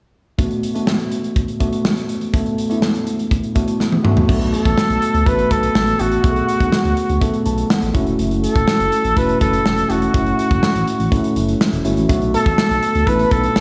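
A worn, slightly out-of-tune tine electric piano with slapback echo opens this nostalgic, dramatic 1980s-style pop piece in B minor at 123 BPM, joined from the start by a polished modern studio drum kit with bright cymbals, a punchy kick and a drum fill leading into the 4.3 s mark. A smooth, dark sawtooth synth bass with ring modulation then enters, and at 4.5 s a flugelhorn with vibrato takes the melody, sounding distant and roomy through tape and slapback echo, while the electric piano adds a fill around the move from Bm7 to F#m7. A lush hall reverb lends the mix a big arena sound, and the passage is cut from a longer piece.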